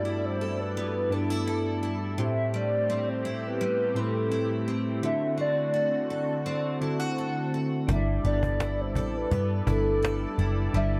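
Indie bedroom pop with a laid-back, sunny mood, this short excerpt sets a hollow, warbling clarinet-like synth lead carrying the melody over picked steel-string acoustic guitar treated with lush chorus and vibrato, mellow electric-piano-like synth keys with a cassette-tape colour, and an airy sustained pad with chorus and phaser. At 7.9 seconds a dark, foam-muted vintage electric bass enters up front alongside a woody, close cajon played with soft hands, as the chords move from G69 through Am7 and D7 back to G69. The sound is dry and intimate, with the lead's slapback echo adding a vintage touch.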